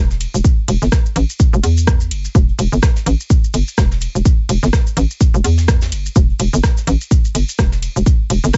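A hollow, bouncy FM bass with a fast, decaying attack and sidechain pumping opens this cool, clinical minimal techno excerpt in E minor at 126 BPM with a swung 16th-note feel, joined by a tape-tinged house kit of metallic hi-hats, ride, rim click and shaker, a very quiet brushed acoustic kit with a fat snare, and from 0.4 s a punchy, up-front electronic kick, in a dry, dark-topped mix.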